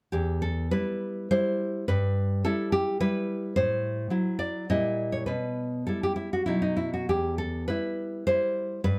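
A fingerpicked nylon-string guitar carries this romantic solo classical piece alone, its full-bodied, deep tone sitting up front in a close, detailed recording with light reverb. The mood is melancholic and passionate, unfolding in E minor in 3/4 at roughly 97-109 BPM with a flexible, rubato feel. The guitar ranges from a low E2 up to D#5, and finger squeaks add an intimate, human touch. The harmony moves from E minor through darker, tense colours such as F#m7b5/A and D#7b9/A#, reaching a B chord near 6.5 seconds before settling back on E minor at 7.1 seconds. This brief passage, cut from a longer piece, runs to about 9 seconds.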